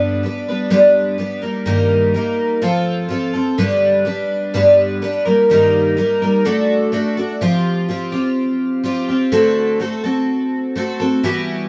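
Rock in G major at 126 BPM, this short passage cut from a longer piece has a jangly, nostalgic mood in a straight 4/4 feel. A picked twelve-string acoustic guitar plays alone throughout, its bright, octave-doubled dreadnought tone sitting up front and given a shimmering quality by lush chorus. The guitar ranges from G2 to B4, moving through G, Eb/G, F and D chords before a turn at 7.4 seconds brings a new section built on Fsus2 and D7. Light reverb surrounds the part, and the overall production is dark and warm, offsetting the guitar's sparkle.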